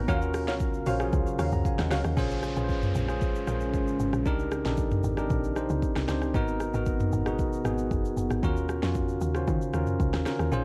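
A bell-like, bright tine electric piano sits up front in this late-night, hypnotic amapiano excerpt at 115 BPM, playing a fill during the opening drop. It rides over a woody, percussive log drum bass and an electronic afro-pop kit with a deep kick, sharp snare, metallic hats, rim clicks, shaker and toms. Nasal, punchy chord stabs with chorus and digital delay flash until 2.0 seconds, an electronic downlifter passes between 2.2 and 6.3 seconds, and a dark, moody pad with reverb hangs in the background. The whole mix carries a worn, warbling cassette-tape drift over minor ninth chords beginning on Ebm9.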